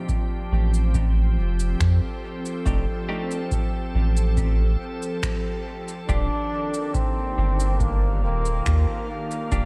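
A lightly reverberant, hazy mix opens this peaceful ambient dub excerpt at 70 BPM in F mixolydian, where a calm, detuned organ-like pad with ensemble chorus holds sustained chords from Fadd9 to Ebmaj9 over a round, up-front sub bass, a deep tape-warm electronic kick and produced electronic cabasa and finger snaps ringing with dub echo. A clean, compressed semi-hollow guitar adds filtered, tremolo-laced stabs in the background from 2.7 seconds, and at 6.1 seconds a distant, roomy trombone with light vibrato and a bright tone takes a solo melody trailed by dub echo.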